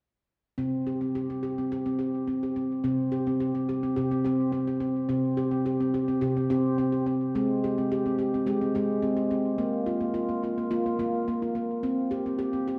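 Gentle and meditative, this world excerpt cut from a longer piece features a solo handpan, ringing and airy with a stainless-steel shimmer under the fingertips, sitting up front from 0.6 to 12.8 seconds at a straight 107 BPM in 4/4, its delayed notes ranging from C3 to G4 over chords moving through C5, Ab, Bb5 and back to C5 within a wet echo-chamber reverb and a dark production.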